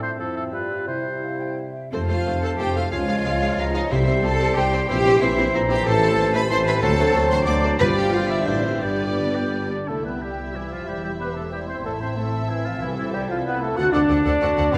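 In a flexible, rubato three-four lilt, this cheerful, spirited orchestral excerpt opens with an airy, hollow flute ensemble, oboe, a distant clarinet, a mellow bassoon, softly sustained French horn chords and ringing fingerpicked harp arpeggios. At 1.9 seconds the strings join: lush violins carry a smooth, vibrato-rich melody over a second, more focused violin line, with very quiet violas, expressive cellos and woody, dark double basses, while a vintage tuba adds weight to the bass. Articulate hard-mallet timpani strokes enter at 3.9 seconds and return at 7.8 and 12.8 seconds, the bassoon and tuba drop out at 9.7 seconds, and a reverberant scoring-stage sound frames the whole ensemble.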